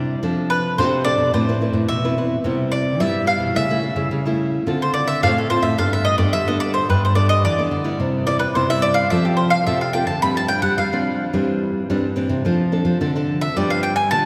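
A long, wet church reverb surrounds this short cut from a longer samba and choro piece, lending its playful, sunny mood a spacious, ringing glow. The mandolin carries the melody as a solo from start to finish, its picked double strings sounding woody and up front. Beneath it, one nylon-string guitar plays fingerpicked accompaniment with a full-bodied, deep classical tone, close and present, with audible finger squeak. A second nylon-string guitar takes the bass line, its fresh strings giving a bright yet small sound. The harmony moves through colorful chords such as F6, Amadd9, Cmaj7, A7/C# and Dm7 before closing on G7 at 13.6 seconds, keeping the straight groove moving forward.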